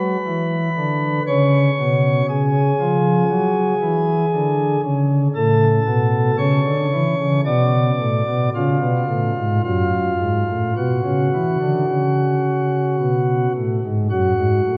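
Classical chorale-style music for solo pipe organ, dark and solemn, moving at 53-59 BPM in 4/4 with a rubato feel in F# minor, tuned to A4 = 444 Hz. The organ speaks through light, bright flute stops that sparkle, set up front with a romantic voicing and spanning F#2 to D5. The harmony passes from E5 through C#, F#5, A and Bm, reaching C#7 at 8.5 seconds before settling on F#m at 9.6 seconds. A wet church reverb with a 2.6-second decay surrounds the instrument, and the sound carries the wavering character of worn cassette tape, its pitch drifting. Cut from a longer piece, the passage holds to a single section of about 14 seconds.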